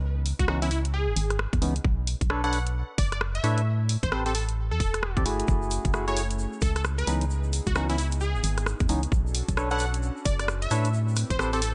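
A hollow, organ-like FM bass opens this moody, soulful stretch of two-step UK garage, sitting dark and up front with a fast, decaying attack. Almost at once, a dry analog drum machine brings a swung hi-hat and rim click in small room ambience. It is joined by a tight, layered electronic kick and a catchy, punchy lead built from detuned sawtooth unison voices, bright with vibrato, a filter sweep, subtle chorus and digital delay. Nasal, wave-folded organ stabs add mellow minor-ninth harmony, treated with chorus and delay. At 5.5 seconds, a smooth analog pad with a soft attack and sidechain pumping settles into the background, alongside a grainy, close egg shaker. The mix carries little reverb and a top end that stops short of the highest treble, and the clip is cut from a longer piece.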